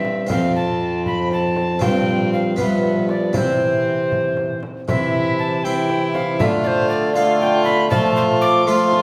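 Stately and courtly, this fragment of a renaissance-style consort dance moves in a steady 6/8, with an airy alto recorder carrying the melody up front, its crisp chiff clear against a gut-string violin singing a reedy second line with light vibrato. A brilliant, plucked harpsichord and a small frame drum played with soft hands sit close and dry, while a mellow bassoon holds the bass and a distant, roomy trombone joins the accompaniment at 0.3 seconds. The ensemble is heard from further back in a recital hall with a generous reverb, the harmony passing from F through G7 to C before turning toward Dm and F in the second section from 4.9 seconds.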